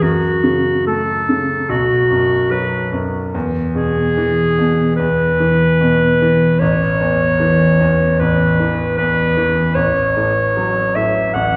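Heard from further back in a reverberant recital hall, this short passage, cut from a longer romantic classical piece, pairs clarinet and concert grand piano in A major, tuned to A4 = 436 Hz, at a flexible, rubato 74 BPM in 4/4. The clarinet sits up front with a soft attack and a bright, vintage tone, carrying a tender, lyrical melody between F#4 and F#5, while the piano's brilliant accompaniment, rich in deep bass, stays low in its range for the full 11.6 seconds. The harmony moves from F#m through B5 and E to A, settling on F#m/A at 9.8 seconds.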